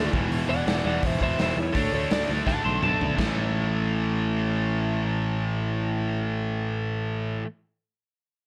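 Dry, with little reverb, this punk rock clip, cut from a longer piece, feels rowdy and upbeat in a straight 4/4. A dark, slightly broken-up and compressed lead guitar takes a solo in its upper register for the first 3.2 seconds. Underneath, two picked guitars drive the riff: a crunchy overdriven one sits in the background, while a tight, bright distorted one stands up front. A growly, amped electric bass holds the low end, and a raw garage drum kit with a gritty, saturated edge, a punchy kick and a medium-tuned snare works through hi-hat, snare, toms and splash cymbal, ending with a fill from 2.5 seconds before it stops at 3.3 seconds. The harmony moves from E5 to D5 and lands on A5 as the second section begins.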